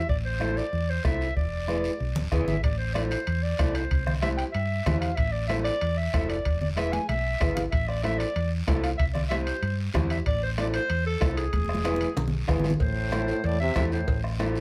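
A moderate studio room frames this fiery, driving cumbia excerpt: a distant, roomy clarinet with plate reverb carries the melody over a round, dark hollow-body electric bass, soft-beaten bombo, damped high-tuned congas, raspy guiro and a slightly broken-up electric guitar with warbly pitch drift, while ringing timbales and cowbell join in the background at 2.6 seconds and a bright, punchy trombone with vibrato adds a second line from 12.8 seconds.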